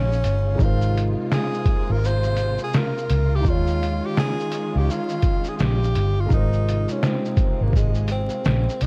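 A swung 84 BPM groove in 4/4 anchors this dreamy, cosy lo-fi hip hop excerpt in Ab major, with a sampler-style drum kit entering at 0.1 s, pitched down and muffled, with a thumpy kick, fat snare, hi-hat, shaker and finger snaps sitting up front in a compressed, small-room sound. Underneath, a vintage muted fingered electric bass gives a round, punchy, foam-muted low end that is the loudest part of the mix. A breathy tenor saxophone carries the melody with subtone, vibrato and scooped notes in a jazz style, bathed in plate reverb alongside a felt-muted upright piano whose soft, intimate accompaniment has a thin felt character. A lush studio string section holds sustained, bowed chords in the background, distant and expressive with vibrato and portamento. The harmony moves between Eb9sus4 and Ab69, and the dark production, light reverb and vinyl crackle give the whole short cut a hazy, late-night glow.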